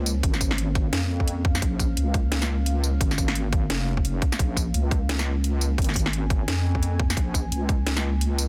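Cinematic and tense, this short cut from a longer half-time drum and bass piece sits at 173 BPM in Bb minor, with a swung, half-time feel over a single Bbmadd9 chord. A dark analog pad holds sustained chords from the first moment, its detuned sawtooth and triangle tones, sub octave and slow attack giving a moody, full-bodied bed that breathes with sidechain pumping and chorus. Beneath it, a deep wobbling bass blends square and sine waves into a detuned, compressed low end, thickened by chorus and tube saturation and placed up front in the mix. The drum kit enters at 0.1 seconds with a cracking snare, bright hats and tambourine, all layered and overdriven with studio reverb. An electronic kick joins at 0.2 seconds, tight, overdriven and forward, and drops out at 7.8 seconds while the other parts carry on to the end. The room is fairly dry, and the master is dense and heavily limited in a modern style.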